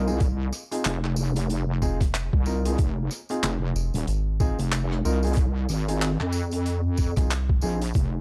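Dark, mellow baby grand piano stabs carrying 12-bit sampler grit, sidechain pumping and analog delay open this funky glitch hop excerpt at 93 BPM alongside a heavy, detuned wobble bass thickened by chorus and tube saturation, as a pitched-down, thumpy electronic kick, an acoustic rock kit of handclaps, hi-hat and rim click, and a jingly, bright tambourine ride a 58% swing on 16ths over an Fm7 in F minor pentatonic, with a rubbery, hollow square bass bouncing in at 1.8 s, all set in studio reverb with a dry, cassette-tape hardware sheen.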